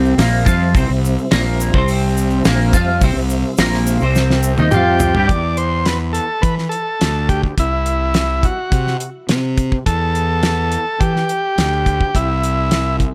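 Psychedelic rock in C mixolydian at 105 BPM, kaleidoscopic and hazy, opens with a bright, twangy twelve-string electric guitar riff, phased and double-tracked, over soft flute-like tonewheel organ chords swirling through chorus vibrato and a fast rotary speaker, with a grainy tube shaker in the background. A round, fuzzed fingered bass and a dry 70s drum kit with a fat snare and tight kick drive the whole cut, and a drum fill at 4.2 seconds leads into the next section. A buzzy, overdriven combo organ with slapback echo enters at 4.7 seconds, and at 5.3 seconds the guitar and mellow organ stop as it carries the melody over D7sus2, C and Em in a small, roomy space.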